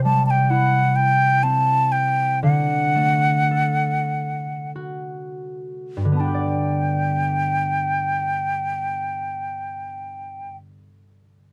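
Celtic folk in 3/4 with a free, rubato feel, this short piece cut from a longer work carries a nostalgic, wistful mood that slows through its first 6.2 seconds before settling onto a G chord. A breathy wooden flute, close-miked and up front, sings the expressive melody with tongued notes and vibrato, while a fingerpicked concert harp, also up front, rings out alongside it in warm acoustic accompaniment. Light reverb surrounds the pair in a dark, warm production.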